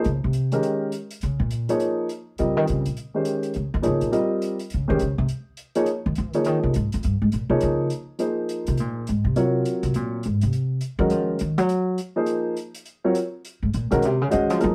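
A woody, thumpy upright bass on gut strings takes the solo throughout this spiritual, searching modal jazz excerpt, its dark pizzicato tone sitting up front at a brisk, swung 206 BPM in 4/4. A warm baby grand piano comps alongside it with a natural sound, moving from Eb7sus4 and Bbm harmonies in Eb mixolydian to Ab7 and Ab mixolydian at 8.2 s, while a faint, airy, polished hi-hat keeps time. The whole is heard from further back in a small room with a wet, short reverb.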